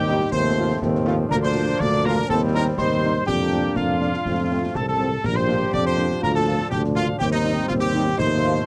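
A straight two-in-a-bar pulse drives this short, proud and festive military-style march for wind band, cut from a longer piece. The trumpet section carries the melody up front with a smooth top and light vibrato, while a bright, wooden piccolo with tongued notes and vibrato adds a second line high in the background. A warm euphonium, distant and roomy, traces another second line beneath, as a clear, tight trombone section holds sustained chords and the French horn section fills in the accompaniment. The mellow tuba sits prominently up front on the bass, and concert snare drum, concert bass drum and dark-toned clash cymbals sound close and acoustic. The harmony moves from F7 over Eb through Bb and C minor inversions to F and back toward Bb, and the cassette-tape recording has little reverb.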